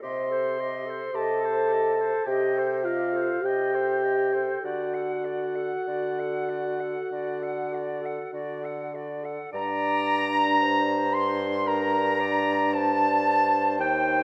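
Melancholic and yearning, this slow romantic classical movement for wind quintet moves at 48-58 BPM in 4/4 with a free, rubato feel, set in G minor. All five players sound together throughout this short fragment, with the silver concert flute carrying the melody in a pure, metallic tone, tongued and touched with vibrato, heard from a distance. Alongside it runs the oboe's mellow, up-front second line, while the clarinet's clear accompaniment stays in the background. The roomy French horn adds accompaniment with a light vibrato, a shading the bassoon shares as its warm, soft-attacked bass line anchors the texture. The harmony leans from Am7b5/C toward D at 4.6 seconds before a new section settles on G minor at 9.5 seconds, all captured by close, detailed microphones within a moderate scoring-stage reverb.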